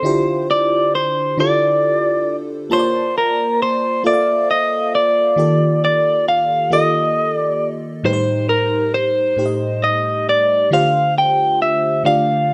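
From the first moment, a picked electric guitar at the edge of break-up carries the melody over an FM electric piano layered with a soft pad, the two sounding together throughout this 12.5-second fragment of a longer R&B piece. The mood is sensual and unhurried, set in a lilting 6/8 with a straight feel. The guitar sits up front, compressed and slightly broken-up, singing in a high register between Bb4 and G5. The electric piano, also up front but a little lower in level, is lush and dreamy: its detuned, triangle-like tone has a fast attack and decaying notes, colored by chorus, phaser and a noise layer. Its chords move from Dm11 through Bbmaj9, Ebmaj9#11 and Am7b5 before settling on Dm7. The band sounds as if it is playing live in one room, wrapped in a moderate stone-room reverb.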